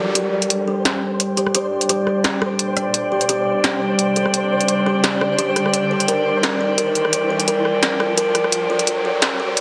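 An industrial electronic drum kit sits up front, entering at 0.2 seconds with a clanging snare, rim clicks and crisp hi-hats in a half-time drum and bass groove at 172 BPM, with a light swing on the sixteenths. Alongside it, a warm symphonic cello section holds sustained chords from the start, its bowed, soft-attack sul tasto tone pure and floating through a low-pass filter, while a filter sweep runs across it as the passage builds. A kalimba plays arpeggios with a woody, hollow, fingertip-plucked ring carried by dub echo, and an electronic riser feeds the build-up. From 0.6 seconds a flickering, granular texture on C5 hovers in the background, detuned and triangle-toned with a slow attack, long release and its own reverb. The mood is dark and spacious, set in small-room ambience with a wet echo-chamber reverb and a dense, heavily limited modern master, in a cut from a longer piece tuned to A4 = 441 Hz.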